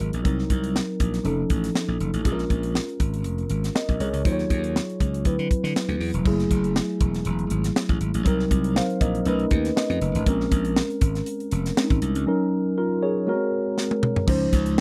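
A growly, punchy slap bass sits up front in this glossy, breezy stretch of polished 1980s jazz-funk pop, cut from a longer piece, while a mellow tine electric piano bathed in lush chorus lays down lightly swung chords that travel from Cm7b5 through Ebm9 and Gbm9 before arriving on Dbmaj9. A tight funk drum kit with bright cymbals, a high-tuned snare and a tight kick keeps the groove crisp, with an electric piano fill at 9.5 seconds and a drum fill at 13.8 seconds. The sound is dry and close, like a 1970s-style studio recording.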